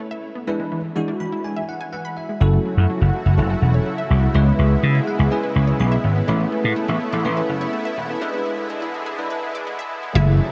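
Up front sits a punchy, amped vintage slap bass, entering at 2.4 seconds and anchoring this confident, bittersweet pop excerpt at 124 BPM in F# minor with a straight 4/4 feel. The piece opens with a lush, full-bodied unison pluck playing arpeggios in the background, joined at 0.5 seconds by a bell-like tine electric piano whose clean, direct accompaniment adds fills and carries an ensemble chorus. From 2.4 seconds a slow-attack supersaw pad, airy and detuned under analog chorus, holds sustained chords as a build-up and filter sweep carry the music forward, with a break arriving at 8.2 seconds. The harmony moves through E7, F#m7, C#m7 and Aadd9 before returning to E7. A hollow, bouncy square pluck flickers in with a brief melodic fragment at the very end, and the whole mix is dreamy and soaked in a huge ambient reverb.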